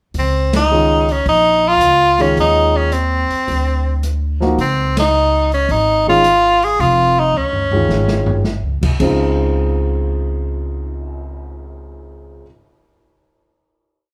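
Small-group swing jazz with a relaxed, playful mood, where an edgy, punchy tenor saxophone with scooped notes and vibrato carries a motif-based melody up front until 8.5 seconds, a woody pizzicato upright bass plays in two, a dark, smooth drum kit keeps time on the hi-hat and adds a fill before the close, and an intimate grand piano with audible action noise comps in syncopated quartal voicings through the final Dbmaj7 chord from 9.0 seconds, all played live together in one room with light reverb.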